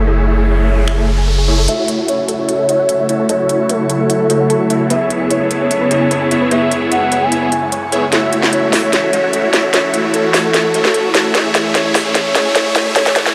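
Dreamy and bittersweet, this half-time future bass excerpt in F# minor at 149 BPM opens with huge detuned supersaw chords, an ethereal airy pad, gentle round plucked arpeggios, a background riser and a deep saturated sub bass that stops at 1.7 s, when a soft octave-layered synth lead with chorus, phaser, vibrato and delay takes the melody over crisp trap drums with finger snaps and a sharp snare that entered at 0.9 s, while a filter sweep on the supersaws shapes the build-up and a drum fill runs from 8.1 s under a moderate shimmer reverb.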